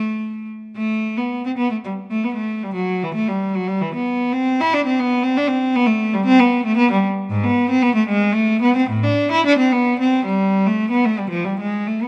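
A baroque-style classical suite movement for unaccompanied cello unfolds in an introspective, flowing mood, moving in 3/4 at around 114 BPM with a supple rubato feel. A single bowed cello carries the whole passage from 0.0 to 12.1 seconds, ranging from G#2 up to E4 and settling into A minor from 7.3 seconds. Its gut-string, period-style tone is rich and reedy, touched with light vibrato. The instrument sits up front, captured by close, detailed microphones, with a light reverb adding a touch of space. Tuned to A4 = 437 Hz, this excerpt is cut from a longer piece.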